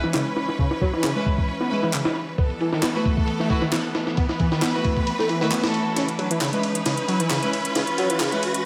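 A gritty, swaggering breakbeat excerpt at 134 BPM in C# minor, cut from a longer piece and heard through a moderate digital room reverb, built as one long build-up with filter sweeps on the drums and the lead. A compressed, pitched-up sampler-style break kit with a thumpy kick and high-tuned snare sits up front, layered with an electronic garage kit of handclaps and metallic hats, while a screaming, guitar-like overdriven synth lead drives a low riff through distortion, tube saturation, chorus and dub echo. Lush symphonic strings hold pumping sustained chords over C#m7 and B7sus4, reedy gut-string chamber strings add echoed stabs from 1.2 seconds, a very quiet riser creeps in at 2.3 seconds, and a drum fill arrives at 6.0 seconds.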